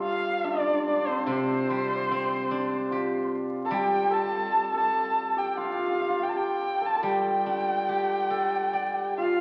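A dark, woody erhu carries the melody from the very start, with vibrato and sliding portamento, bowed by a single player and set up front. Beside it, a shimmering hammered dulcimer rings out a second line, while a steel-string zither played with fingerpicks fills in a silvery accompaniment across its span. The traditional Chinese chamber music moves in a free, rubato pulse and feels festive and pastoral at once. Only at 9.2 seconds does a mellow bamboo xiao slip in, its airy, end-blown tone softly touched with vibrato, just before this fragment of a longer piece cuts off. A lush recital hall reverb surrounds the ensemble, and the whole sound carries the crackle and age of a very old 78 rpm record.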